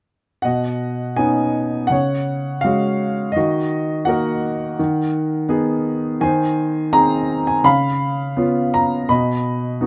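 Hopeful and warm, this short classical fragment, taken from a longer piece, features a lone grand piano in a lyrical, rubato 4/4, moving from Badd9 through D#m and C#7 before coming to rest on B at 9.1 seconds. The instrument sounds intimate and somewhat boxy, sitting up front with long sustain and audible action noise, its range spanning B2 to B5. Close, detailed microphones and a light reverb keep the sound near and personal across its roughly ten seconds.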